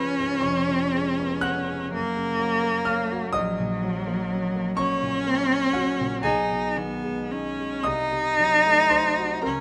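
Romantic classical duo for cello and grand piano, tender and warm in mood, moving in a slow 6/8 with a free, rubato feel through this brief passage cut from a longer piece. The bowed cello carries the melody up front with a rich, focused tone and vibrato, while the grand piano accompanies with an intimate, natural sound in which the action noise can be heard. Close, detailed miking and light reverb keep both players present, and the harmony darkens onto a diminished chord at 7.9 seconds.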